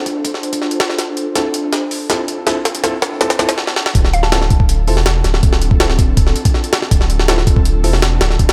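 A light reverb wraps this short, dark and atmospheric drum and bass excerpt in jungle style, built on a Dm7 chord. An ethereal, airy pad with ensemble chorus and its own reverb holds sustained chords from the start, and a sampler-style jungle drum kit sits up front with a thumpy kick, high-tuned snare and a gritty, pitched-up, compressed character, as if re-recorded in a large room. From 1.4 seconds, concert grand piano stabs arrive through a filter sweep, carrying vintage 12-bit sampler grit and dub echo as the opening builds with drum fills toward a stop. At 3.9 seconds the drop lands, and at 4.0 seconds a round, soft dub sub bass with tube saturation enters underneath. A woody, warbling mallet-like synth pluck adds a brief melodic figure in the background, coloured by chorus, cassette tape and dub echo.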